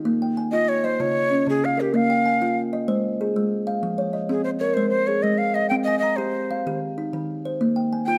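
A woody, ringing kalimba opens this trance-like southern African traditional piece with thumb-plucked arpeggios spanning Db3 to Bb5, its hollow box tone sitting up front in a small, boxy room. At 0.5 seconds a breathy cedar flute in the Native American style enters with a soft-attacked, expressive melody between G4 and G5, colored by vibrato. The hypnotic 12/8 pulse moves at 127 BPM in Bb dorian, heard through close, detailed microphones and light reverb in this fragment of a longer piece.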